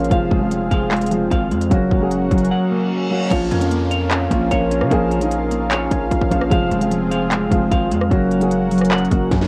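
A dark, worn piano, chorused sawtooth pad, clean hollow-body guitar arpeggios with analog delay, a saturated, distorted 808 bass and up-front trap drums with a hard-clipped kick, sharp snare and crisp hats open this melancholic, eerie half-time trap excerpt at 150 BPM in Bb minor, where a brief break with a background reverse cymbal near 2.6 seconds gives way to a new section at 3.3 seconds and a drum fill at 9.3 seconds, all colored by cassette-tape grit and a short, wet booth ambience.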